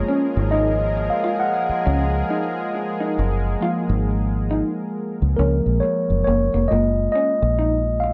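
A mellow, clean tine electric piano leads up front through this smooth R&B fragment with a swung sixteenth feel, joined by a round, punchy, foam-muted dub bass from 0.4 seconds, a soft, detuned sawtooth pad with chorus that stops at 6.7 seconds, and a bright, twangy, slightly broken-up lo-fi guitar line bathed in lush chorus, with light reverb on the mix.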